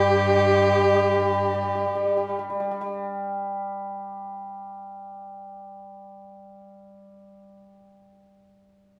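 A clear, close erhu carries the melody with vibrato and smooth portamento in this graceful, festive Chinese chamber fragment, moving freely in rubato around 55 BPM in 2/4. A close, focused bowed cello adds a second line, joined by an airy, end-blown bamboo xiao with unsteady, tongued vibrato in the background, all three falling silent at 2.4 s. The shimmering, ringing hammered dulcimer sits up front and carries on until 7.6 s, while a silvery guzheng played with fingerpicks is barely audible beneath, all set in a moderate recital-hall reverb.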